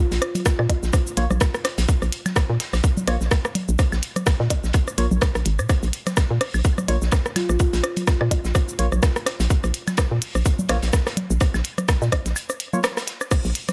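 Minimal techno at 126 BPM in Bb minor, clinical and cool, built on an up-front tight electronic kick, a hollow, bouncy FM bass with sidechain pumping, an overdriven clicky drum kit, a gritty garage kit in the background, analog rim click, congas and woodblock with delay, and dark chorused organ stabs from 1.2 seconds, with a brief woody kalimba note at 7.4 seconds before a break at 12.4 seconds.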